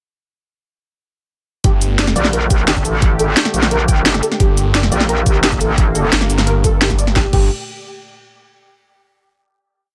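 A metallic, wobbling FM bass growls up front from 2.2 s, its wobble speed changing as it answers a swirling, detuned saw bass given phaser and overdrive in chopped phrases, in this dark, futuristic and mechanical drum and bass piece at 174 BPM in G minor. An overdriven electronic kit and knocking kick, re-recorded in a small room, drive tight technical drums with a cracking snare, bright hats, shaker and crash. Meanwhile an evolving, resonant pad sustains chords in the background and a soft, round pluck repeats a 16-step arpeggio through cassette tape and dub echo, both pumping against the sidechain in a digital ambience, with the drop opening on a Gmadd9 chord at 1.6 s and yielding to a final chord at 7.2 s.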